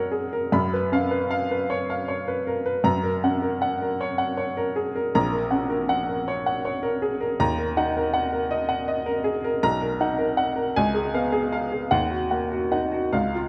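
Swaying in a lilting compound metre, the rhythm stretches and yields with free rubato, so the beats fall unevenly and the music breathes like spoken phrasing. This short romantic character piece for solo piano, cut from a longer work, carries a passionate yet hopeful mood. An upright piano plays alone throughout, its woody, slightly detuned tone sitting up front with a short sustain, ranging from deep bass up into the bright upper register. The harmony rocks between the home chord and its dominant seventh before moving through a minor chord and a major seventh chord. It ends on the minor chord at 11.9 seconds, leaving the phrase open. A moderate reverb, like that of a scoring stage, lends the intimate instrument a natural sense of space.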